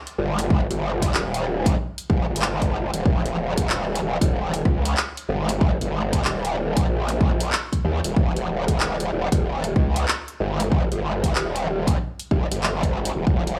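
Swung sixteenths in 4/4 drive this gritty, playful glitch hop excerpt, where a punchy, layered electronic kick and a produced pop kit of handclaps, rim clicks and bright hi-hats sit in studio reverb alongside an aggressive, growling bass that wobbles through a formant filter, detuned, saturated and compressed with chorus, up front in a small, fairly dry room.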